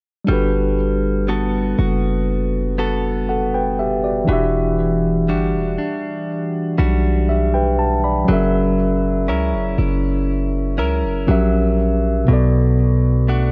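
A slow, straight 4/4 pulse at 60 BPM carries this smooth, dreamy R&B fragment in G major, cut from a longer piece. A mellow tine electric piano, heard through its built-in speakers, holds the accompaniment from 0.2 seconds, while a clean, compressed, direct-recorded electric guitar picks arpeggios and a deep, boomy 808-style bass with a sine tone, fast attack and decaying notes sits up front beneath them. Light reverb and the warbling pitch drift of worn cassette tape color the sound as the chords move from Gmaj9 through Em9 to F#7 and F#7b9 before landing on Bm7 at 12.3 seconds.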